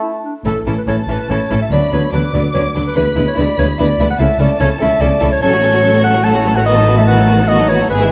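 Lively and graceful, this quick classical-period orchestral excerpt in A major at 145 BPM in a rubato 3/4 opens with a mellow, up-front solo clarinet at 0.0 s, joined at 0.5 s by a smooth, even violin section and distant, rich violas, an expressive cello section and a lush double bass section, all bowed with vibrato, before a clear, intense upper violin section takes the melody at 0.9 s, all set in moderate recital hall reverb.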